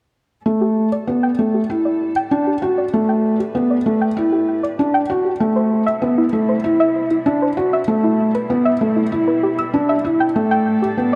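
A lush hall reverb gives this short electronica excerpt a luminous, tender glow, with the felt-muted upright piano sitting up front and its action noise audible. At 97 BPM in a straight 4/4, the piano plays a mellow, intimate riff in G major, touched with delay, from 0.5 seconds to the end at 11.2 seconds. Behind it, a con sordino string quartet, one player per line, fades in with veiled, distant sustained chords carrying vibrato. A soft, round synth pluck enters at 0.6 seconds with arpeggios in a higher register, its fast attack and decaying tail thickened by chorus and delay while a filter sweep moves through it. The harmony shifts from Gsus2 to C, then Em, and back to Gsus2, all tuned slightly low at A4 = 437 Hz.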